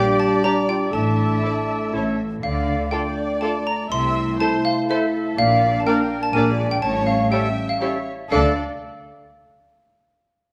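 A sneaky, quirky cinematic cue in D minor at 122 BPM in 3/4 opens with a dry, percussive xylophone played with plastic mallets carrying the melody alongside a lush, vibrato-rich violin section set in the background. Around them sit an airy flute section, a very quiet smooth-topped clarinet, a distant, roomy oboe and a soft, portamento-tinged second violin section on supporting lines, while a dark, punchy bassoon, an even viola section and a tight, mellow French horn section fill out the accompaniment and sustained chords. A focused cello section and a distant double bass section enter on the bass at 0.9 s, all within a moderate scoring-stage reverb, before this excerpt from a longer piece moves onto a bare D5 chord at 8.3 s.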